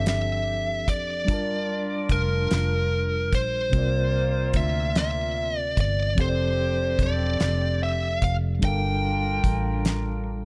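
Slow six-eight R&B with a yearning, late-night mood, where a biting, overdriven lead guitar carries the melody up front over a mellow tine electric piano, jazz-style horn stabs with light vibrato and a smooth top, a dark, foam-muted fingered electric bass and a damped 70s drum kit with a fat snare and tight kick, set in light reverb over changes through F69, Gm9 and C7sus4.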